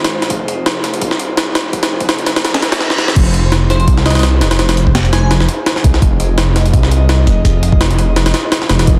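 Gritty, pitched-up jungle drums with a thumpy kick and high-tuned snare, re-recorded in a large room, drive this dark, frenetic drum and bass cut at 168 BPM in F minor, sitting up front beside a deep, rumbling detuned saw bass that holds low sustained notes over an Fm7 chord. A breathy chorused pad hangs in the background throughout, while a very quiet riser and reverse cymbal build toward the drop at 3.2 seconds after a short drum fill. A soft, dreamy lead with vibrato and dub echo floats in briefly from 3.7 seconds, all under a dense, heavily limited master with light digital ambience and vinyl crackle.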